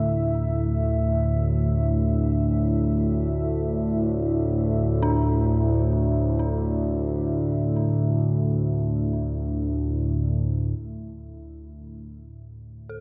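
An up-front analog drone, evolving and sawtooth-edged with pulse-width movement and chorus, anchors this dark, ominous free-time ambient passage, cut from a longer piece, in the low D register. A deep, mellow pad of detuned unison saws and a sine sub octave sustains a Dsus2 chord until 10.8 s, when it drops out and the harmony thins to a D5. Meanwhile an eerie, inharmonic FM bell with chorus and delay arpeggiates quietly in the background, fading out across the first 10.8 s, all within a cavernous cathedral reverb.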